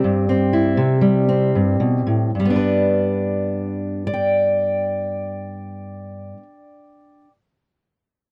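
A fingerpicked steel-string acoustic guitar plays alone, up front, its auditorium-sized body giving a dark tone as it spans from G2 to G5. This short folk excerpt sits in G major and 6/8 with a straight feel, moving at a slow 35-42 BPM counted in dotted quarters. The mood is nostalgic and gentle, with the opening passage slowing down over its first 2.3 seconds on a C chord before settling onto G at 2.3 seconds. A light reverb surrounds the guitar, and the overall production is dark and warm. Cut from a longer piece, the fragment closes at 7.3 seconds.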